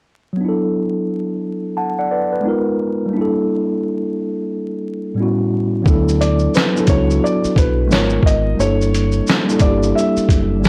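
A 16th-note swing at 88 BPM sets up this mellow, cosy lo-fi hip hop excerpt in D major, where a clean, up-front tine electric piano colored by cassette tape and a low-pass filter plays chords alone until 5.9 seconds, when a compressed, muffled, pitched-down sampler-style drum kit with a thumpy kick, re-recorded in a large room, arrives with a dark, round fingered dub bass carrying tube saturation, and at 6.2 seconds a soft, felt-muted upright piano adds an intimate filtered melody, the whole mix set in light digital reverb with a dry, gritty hardware character and vinyl crackle.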